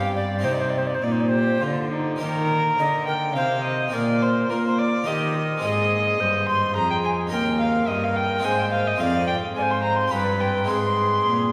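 A grave, introspective baroque-style sonata movement in Eb major opens with all four parts sounding together at 106 BPM in a straight 3/4: an airy tenor recorder carries the melody with vibrato and a crisp, chiffy attack, while a nasal, gut-strung violin with a reedy period tone traces a second line. Beneath them a brilliant Italian-style harpsichord gives full plucked accompaniment and a single bowed cello, dark with a smooth top, supplies the bass, both strings sitting up front. A cathedral reverb with a 4.6-second decay fills the church space, and this short cut ends at 11.5 seconds on an Ab chord after a G7.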